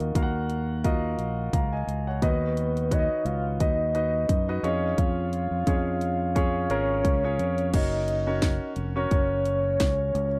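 A punchy electronic house drum kit with a cracking snare sits up front in this anthemic, uplifting piano-driven pop excerpt, joined by a round, dark fingered electric bass, a clear, intimate concert grand piano with audible action noise and long sustain, and a soft octave-layered synth lead whose sine and sawtooth tones carry chorus, tremolo and vibrato, all captured in a dry, close 1970s-style studio sound as the chords arrive on F# at 7.7 seconds.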